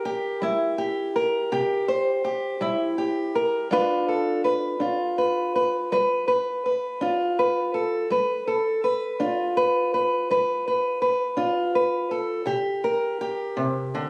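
Rollicking and swaggering, this short blues in 12/8 features a lone fingerpicked, ladder-braced acoustic guitar, its old strings giving a dark, woody, boxy tone that sits up front. The harmony moves from C7 to G7 at 3.7 seconds before settling on a bare C7 near the close of this 14.1-second fragment of a longer piece. The guitar was caught on a phone in a booth, with a touch of studio reverb added to the close room sound.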